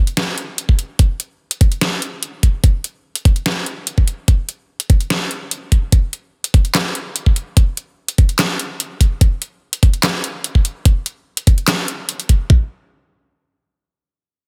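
Dry, dense and heavily limited, this heavy, chaotic dubstep excerpt at 146 BPM in a half-time 4/4 feel pairs an up-front, knocking electronic kick drum entering at 0.7 seconds with a layered dubstep kit of handclaps, deep snare and metallic hi-hats running from 0.1 to 12.4 seconds, both parts re-recorded in a small room.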